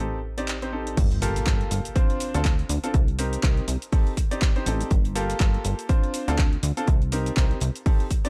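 Dark, small-room production frames this soulful, bittersweet piano house excerpt in G minor at 122 BPM with swung sixteenths. A clear, worn grand piano riff with sidechain pumping and dub echo and a plucky, funky sawtooth bass, also pumping and up front, open over an Am7b5–Gm9–Dm7–Cm7 cycle. At 1.0 s the drop brings in a layered, up-front electronic kick, a very quiet impact, and a faint, dry 70s kit with a fat snare and hi-hat, joining the tape-warm analog drum machine's cabasa, crash, handclaps and hi-hat.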